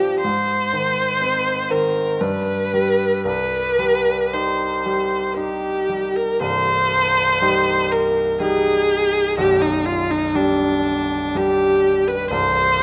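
Close, detailed microphones in a recital hall with moderate reverb capture a solemn, yearning romantic duo in C minor, tuned to A4 = 436 Hz, moving in a rubato 3/4 at 55-64 BPM. A focused, bowed viola with vibrato sings the melody up front, while the brilliant grand piano accompanies with intimate presence, long sustain and audible action noise, reaching down to B0. Cut from a longer piece, the passage states its opening section twice, passing through Ab, Cm and G/B harmonies, with a second statement beginning at 6.4 seconds.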